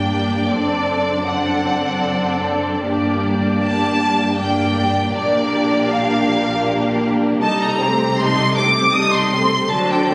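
Unfolding in a slow, rubato 3/4 at 78 BPM with uneven beats, this solemn, elegiac G minor passage for string orchestra, cut from a longer piece, moves from D7/F# through Gm and Gm/Bb to Am7b5/C. An up-front, rich violin section sings the smooth vibrato melody over a lush, expressive second violin line, with an even viola accompaniment sharing the foreground, a focused cello bass, and a double bass in the background with soft attacks and portamento. Captured on a phone in the room under moderate scoring-stage reverb, with compression and lossy artefacts, the violins and violas sound distant.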